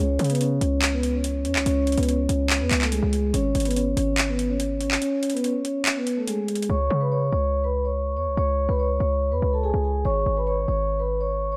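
Hip hop and trap excerpt at 143 BPM in a half-time 4/4 feel, dark and melancholic, moving between C#5 and G#m chords under light reverb. A mellow, ringing vibraphone played with soft mallets carries the melody through a digital delay, over a punchy, heavy 808-style bass with a sine body, a noise layer and a fast attack that decays. A trap kit of handclaps and metallic hi-hats sits up front until 6.7 s, its kick muted from 5.0 s, leaving vibraphone and bass for the closing section.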